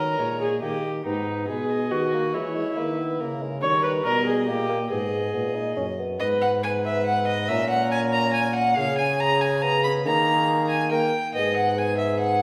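A solemn, courtly renaissance-style consort dance in G# minor at 140 BPM in 3/4 opens with a gut-string violin carrying the melody up front with light vibrato, a nasal, airy-bowed viola on the second line, a mellow bassoon as accompaniment and a soft-attack trombone holding the bass, the four playing together through the 12.4 seconds of this fragment cut from a longer piece, its phrase stated twice in a reverberant recital hall with a 1.4-second decay before settling on G#m.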